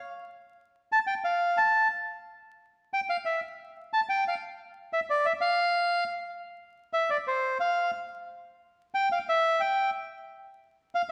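A tense, dramatic tango in F major, taken from a longer piece, moving at 179 BPM in a rubato 3/4. A lone bandoneon carries the music from 0.9 to 11.0 seconds, its reedy, dark, smooth voice placed up front and staying between C5 and A5. The instrument rings through the wet reverb of a recital hall, with a layer of vinyl crackle beneath.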